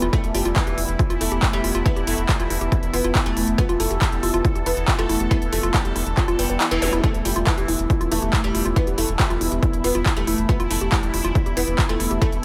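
A psychedelic trance piece at 139 BPM in 4/4 with a straight feel, set in E phrygian and carrying an intense, psychedelic mood across a 12.4-second excerpt. A punchy, up-front electronic kick drives the groove alongside a big-room dance kit of handclaps and crisp hi-hats, with the kick dropping out briefly between 6.6 and 7.0 seconds as an electronic zap flickers in the background. Underneath, a round analog bass with tube saturation sits deep and nasal on the lowest notes, while a woody, wave-folded pluck plays a short-decay riff through chorus and digital delay. A bright, plectrum-plucked fretless oud carries the melody with its double strings, colored by phaser and delay. Sustained chords come from a bubbling, resonant sawtooth texture with random filter steps, and a warbly, lo-fi tape-like pad adds a nostalgic, mellow haze in the background, both of them pumping with the sidechain along with the oud and pluck in a lightly reverberant mix.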